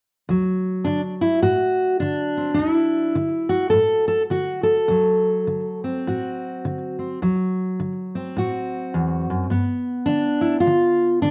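A lightly swung 4/4 feel carries this gritty, rollicking acoustic country blues excerpt, where a lone fingerpicked steel-string guitar, dark and woody with the full body of old strings on a dreadnought, sits up front with a slapback echo from 0.3 to 11.3 seconds, riding a D7 chord before turning to G7 at 9.5 seconds in a dry, close 1970s-style studio sound touched with light reverb.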